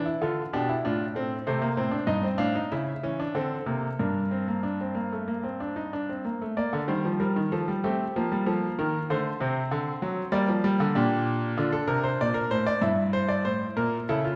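Stately yet lively, this baroque-style three-part fugue in G minor for solo baby grand piano moves at 96 BPM in a straight 4/4, its bright, brilliant tone and audible action noise giving an intimate, natural feel within the lush reverb of a recital hall heard from further back, as harmonies drift from D minor through diminished and dominant chords, twice settling on G minor along the way, with a new section beginning at 6.6 seconds before this cut from a longer piece ends at 14.4 seconds.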